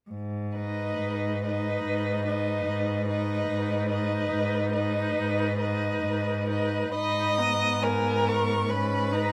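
A lightly reverberant string quartet plays a slow, elegiac romantic movement in G# minor at 64-74 BPM with rubato, as an up-front cello holds a rich, bowed G#2 bass from 0.1 seconds, joined at 0.6 seconds by a distant, focused viola accompaniment, a clear second violin line, and a first violin melody between D#5 and C#6 sung with soft attacks, vibrato and expressive portamento over a solemn G# minor harmony that passes into a new section at 6.9 seconds.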